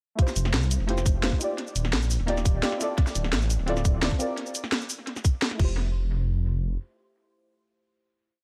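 Liquid drum and bass at 172 BPM in F major, this short, dreamy and uplifting piece opens straight into its drop at 0.2 seconds. A tight, up-front electronic kick and a layered kit with a cracking snare, hi-hat, shaker and crash drive a rolling two-step groove, the kit carrying a tape echo, before both stop at 5.7 seconds. Beneath them, a dark, detuned saw bass rumbles in a dub-style line, deep and saturated, running until 6.8 seconds. Soft, nasal chord stabs with chorus and dub echo play syncopated rootless voicings through Fmaj9, Ebmaj9, Dm9 and C9sus4, returning to Fmaj9. From 5.8 seconds a final hit rings out as those stabs carry on until 8.4 seconds, in a dry, echo-heavy mix.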